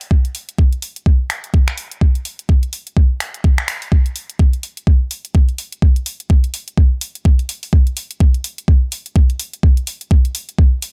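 Garage drum-kit finger snaps and warm hi-hats open this swaggering, gritty house clip at 126 BPM with a 16th-note swing, joined at 0.1 seconds by an up-front, overdriven, knocking electronic kick in a dry, close mix, before a build-up takes hold from 3.9 seconds.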